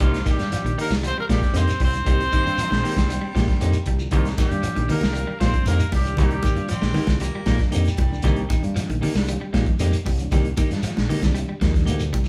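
Afrobeat with an intense, driving feel, cut from a longer piece and built over a single minor-seventh chord: a crunchy, saturated breakbeat kit sits up front with a tight kick, a fingered electric bass growls beneath it, and a clean picked guitar plays stabs while a slightly broken-up guitar picks arpeggios in the background. A very quiet, reedy electric piano with fast tremolo adds accompaniment, and a grainy shekere sits far back, joined at 4.1 s by bright, dry, hard-handed congas. A vintage-toned trumpet with light vibrato and scooped notes carries the melody over a growling, close-miked tenor saxophone, with a raspy, distant baritone saxophone entering at 2.3 s; trumpet and tenor stop at 6.9 s, all in a live large-studio room sound.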